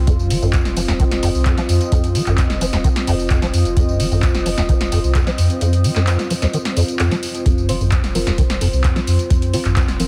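A straight 4/4 acid house groove at 130 BPM is driven by a deep, tape-warm electronic kick and an analog drum machine with a punchy snare, metallic hats, handclaps and tambourine, while a rubbery, resonant square-wave acid bass riff with overdrive and ensemble chorus runs under a filter sweep, anchored by a thick, saturated triangle sub bass that pumps with the sidechain. Hypnotic and trippy, this section cut from a longer piece layers a smooth, dark sawtooth pad in the background with a warbling, nostalgic, lo-fi tape-like pad carrying chorus and its own reverb, both breathing with sidechain pumping, and at 7.7 seconds a soft, wave-folded chord stab with chorus, phaser and tape echo joins them. The sound is heavily compressed in a radio-like way, with light reverb and an F5 chord at the start.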